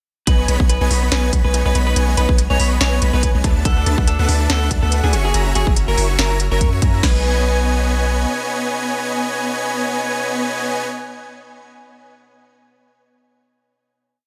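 Future bass at 142 BPM in B major, with a half-time, lightly swung feel that sounds playful and lush. The piece opens straight into a drop at 0.3 seconds, built on huge, detuned supersaw chords that pulse with sidechain pumping and digital delay, and a deep, sine-based 808-style bass that sits up front and follows the chord rhythm. An electric guitar through a small old amp, slightly broken-up and picked, carries a repeating riff melody, while an airy, dreamy lead with chorus and vibrato sits in the background doubling the chords in arpeggios. A very quiet, wave-folded unison pluck with ring modulation and a filter sweep runs a six-step arpeggiated loop that drifts against the bar. Two trap kits drive the drop, one with a hard-clipped half-time kick, sharp snare and crash, the other with crisp hats and rolls, and both fall away around 7 seconds. From 7.0 seconds a final B6 chord rings out as the bass stops at 8.3 seconds, with the guitar, lead and supersaws carrying through to 10.8 seconds in a digital ambience.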